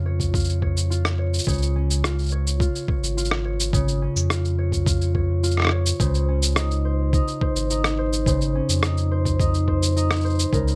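A pastoral, delicate folktronica excerpt opens with mellow, ringing fingerpicked concert harp arpeggios, up front and touched by digital delay, over a deep, round sine sub bass; at 0.2 seconds a muffled, pitched-down, sampler-style electronic kick and a compressed, tape-warm shaker and rim click join, with the shaker and rim up front, all in a light reverb, as the harmony moves from Db to Ab at 6.0 seconds.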